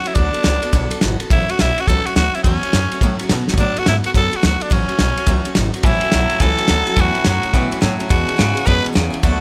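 Rockabilly excerpt at a brisk 212 BPM in A major, upbeat and rollicking with a swung eighth-note feel, where a raspy, edgy tenor saxophone with vibrato carries the melody up front over a bright picked acoustic guitar, a woody, thumpy pizzicato upright bass and a cloth-damped, thuddy drum kit with dark cymbals and a tight, gritty kick, the band moving through chords like D6, A6 and E6. A drum fill lands at 3.4 seconds, and a clean, twangy electric guitar riff enters low at 5.8 seconds. The sound is dry and close, with little reverb.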